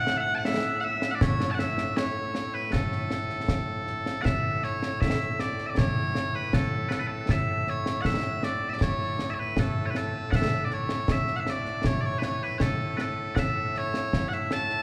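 Loud, piercing bagpipes carry a continuous, proud melody up front in this stirring excerpt of Scottish traditional pipe music in straight 2/4, joined from 0.1 seconds by close concert snare and bass drums with dark cymbals, all set in the long, wet reverb of a church.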